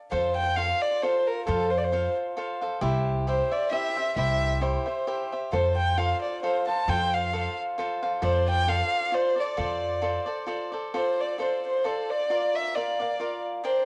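Mexican folk in the mariachi tradition, this short cut from a longer piece moves in a lilting three-beat metre with a light swing, carrying a proud, romantic mood. A single bowed violin takes the melody with a dark, woody tone, played sul tasto with vibrato and placed close and up front. Beside it, a picked cavaquinho supplies crisp, acoustic accompaniment, and both of these parts carry the hazy colour of cassette tape and a plate reverb. Underneath, a plucked upright bass on gut strings gives a thumpy, warm, woody low end until it drops out at 10.2 seconds. The harmony settles around F and its dominant C, touching an F6 colour before a new passage begins at 10.9 seconds and leans toward Bb. The whole take has the intimate feel of a home cassette recording in a moderately reverberant room.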